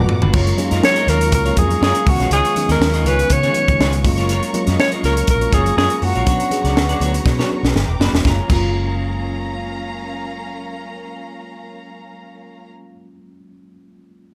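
Polished 1980s jazz-funk pop with a glossy, urban mood, moving at 121 BPM in 4/4 with a light sixteenth-note swing in F# major, cut from a longer piece. A breathy alto saxophone carries the melody up front from 0.8 seconds, its subtoned, scooped notes trailed by digital delay, while a crisp fusion drum kit with a punchy kick and high-tuned snare sits up front with a gritty, saturated edge and fills at the start and again before the second section. Very quiet, ringing congas sit beneath the kit, and a dark, round, foam-muted fingered electric bass anchors the low end. A mellow tine electric piano with subtle chorus comps through the chords, joined by a clean semi-hollow electric guitar riff in the background, also lightly chorused. A studio string section holds soft-attack, bowed chords with gentle vibrato and a smooth top, moving from F#maj7 through C#7, Bmadd9 and Gmaj7 before returning home. 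Drums, congas and sax drop out by 8.6 seconds, leaving keys, guitar, bass and strings to carry the closing passage in a light, small-room ambience.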